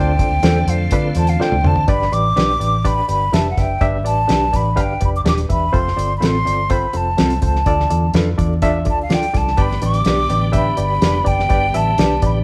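Uptempo 1960s-style soul at 125 BPM in G mixolydian, danceable and joyful, where a breathy, up-front concert flute carries the melody over a barky, overdriven electric piano with fast tremolo, a foam-muted round bass, a cloth-damped thuddy drum kit with a fat snare that fills from 1.4 to 1.9 seconds, clean, mellow guitar stabs, and a piping tonewheel organ on fast rotary speaker heard only at the start and again from 9.6 seconds, all captured as a band playing live in one room with large studio reverb and vinyl crackle, moving from Dm7 to G, F and Dm in this fragment of a longer piece.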